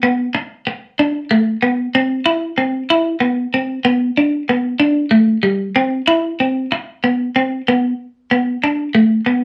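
Bright, twangy and up front, a clean electric guitar with analog chorus rings out alone in a wet studio reverb, playing picked lines between G3 and E4. This carefree, danceable highlife fragment moves at 126 BPM in dotted quarters in a straight 12/8. The solo guitar carries the whole 9.4 seconds, which are cut from a longer piece.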